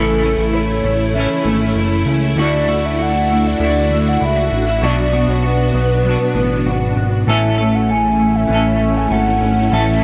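A hollow, woody clarinet-like synth lead carries the melody with a warbling vibrato, its chorus and digital delay floating over a blissful, ethereal dream pop excerpt in A major at 98 BPM. Two clean, dark electric guitars share the accompaniment, a semi-hollow one pulsing with harmonic tremolo and a mellow one playing arpeggios through lush chorus and delay, while a string machine holds bright, slow-attack viola chords and a fat, detuned analog bass sits up front. A dry, rustic marimba adds faint texture far beneath, and a moderate plate reverb gives the whole a dreamy bloom across the A, Dadd9, Bm, A progression.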